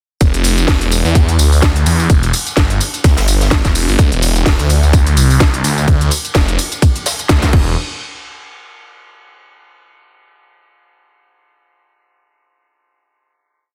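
Gritty and bouncy, this short bass house piece rides a swung 4/4 groove built around a thick, swirling detuned saw bass that sits up front with a saturated edge, pumping through sidechain and spinning through a phaser in chopped phrases from E1 to E2. A tight electronic kick holds a four-on-the-floor pulse at the front of the mix, while a layered garage kit adds a cracking snare backbeat, crisp programmed hats, tambourine and crash, both carrying a tape-warm color from being re-recorded in a large room. Tucked in the background, an acoustic kit played with bundle sticks runs a looped breakbeat with edits, its hi-hat, ride and medium-tuned snare thinned by high-pass filtering and the snare softly clipped. The whole piece is one drop from 0.2 to 7.8 seconds, punctuated by a band accent at 7.3 seconds before a final hit rings out to 9.7 seconds. The mix is dry and dense, with a heavily limited, modern master.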